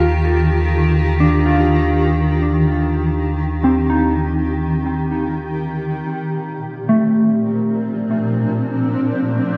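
A drenched echo-chamber reverb and a cassette-tape haze soak this short ambient fragment, giving it a weightless, serene stillness. Up front, a cloudy granular pad holds sustained chords from Bb2 up to G4, its detuned, blurred voices fading in slowly, shifting as they evolve and trailing off with a long release in their own reverb. A mellow, clean electric guitar, dark in tone and fingered, plays arpeggios between A3 and A4 throughout, colored by tremolo and tape echo. Beneath them, a round, deep analog bass sustains a single Eb2 until 6.0 seconds. The harmony rests on Ebmaj7 before moving to Bbmaj7 at 6.1 seconds, where the pad and guitar carry on alone to the close at 9.6 seconds.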